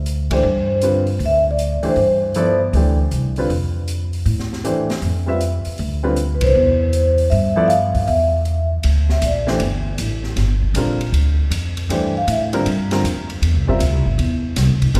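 The vibraphone leads this spiritual, searching modal jazz excerpt, its medium-mallet tone metallic and ringing with a slow motor vibrato, heard close-miked, dry and full against the surrounding space. The band hits an accent at the opening and again at 6.4 s, and from 8.8 s the music settles into G dorian as the vibraphone takes a solo over a Gm7 chord that later moves to C, having earlier moved over C/D and C harmonies. A woody upright bass, plucked with steel strings and placed up front, carries the low end at 157 BPM in 4/4 with a swung eighth-note feel. An upright piano adds warm, short-sustained accompaniment beneath the melody. An open acoustic drum kit sits further back, with dark cymbals, a high-tuned snare and a boomy kick, and the whole band rings out in the long, wet reverb of a concert hall or church.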